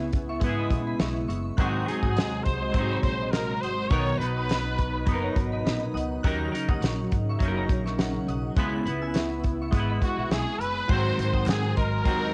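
A hazy, lightly reverberant home cassette sound frames this mellow indie and bedroom pop excerpt at 103 BPM with a gentle sixteenth-note swing, where a clean semi-hollow electric guitar wobbles through analog chorus and drifting pitch over a smooth, detuned sawtooth pad, a woody, thumpy pizzicato upright bass and a loose small-room drum kit with a fat snare and rolled-off top. A dreamy FM bell shimmers quietly above with tremolo and delay, while an up-front, raspy growling trumpet carries the melody from 1.6 s and returns at 10.0 s, and a distant group handclap sounds very quietly at 11.5 s. The harmony moves through D#m7, G#7 and Bmaj7.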